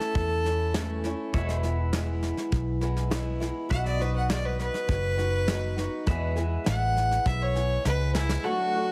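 A straight 4/4 at 101 BPM, set by a soft brush kit with a tight kick and an electric bass that is round, punchy and foam-muted from 0.2 seconds, carries this sunny, down-home honky-tonk and classic country cut through a dry, heavily compressed radio sound. Up front, a biting, earthy fiddle with light vibrato takes a solo over A, E and B chords, backed by a woody, boxy ladder-braced acoustic guitar on old strings and a twangy pedal steel in the background with volume swells. A drum fill at 7.9 seconds leads to a brief entrance of a classical-style woodwind section at 8.5 seconds just before the cut.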